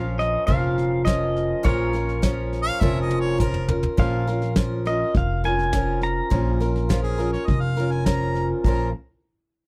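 A straight 4/4 groove rides on soft brushes with a punchy kick, a woody, thumpy upright bass and a boxy, picked old ladder-braced acoustic guitar, setting a lonesome, heartbroken honky-tonk and classic country mood in this excerpt from a longer piece. A clean pedal steel guitar carries the melody with fingerpicked slide and volume swells until 8.0 seconds, while a second, brighter pedal steel holds chords with a subtle chorus in the background for the first 4.0 seconds. A warm harmonica with light vibrato and a smooth top adds a second line from 2.6 seconds, the drums play a fill, and the whole is captured dry and close in a 1970s-style studio sound.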